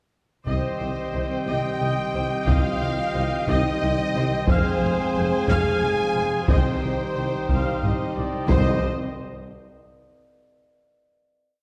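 A dark, dramatic cinematic orchestral piece in 6/8 opens at 0.5 s with heavy single taiko strokes alongside two lush violin sections doubling the tune at the octave, a clear viola section driving a rhythmic ostinato, mellow French horns and very quiet, bright trombones holding chords over a thick pipe organ on foundation stops, and woody cellos and double basses joined by a tuba on the bass line. Round soft-mallet timpani enter at 6.5 s before a final chord at 8.5 s, all set back in a wet scoring-stage reverb.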